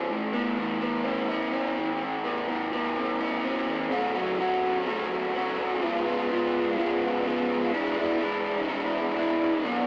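Hazy and melancholic, this short rock fragment, cut from a longer piece, moves at 126 BPM in a straight 4/4 in F# minor. A single raw garage guitar carries it alone from start to finish, electric, picked and double-tracked, sitting up front with overdrive and tape echo giving it a warm, lo-fi edge. Its range runs from E2 up to F#4, and the harmony opens on Aadd9 before shifting to F#m at 3.9 seconds, then passing through C#5 and E5. A wet small-room reverb wraps the sound, and the rough rehearsal-room capture keeps the top end dull and muffled.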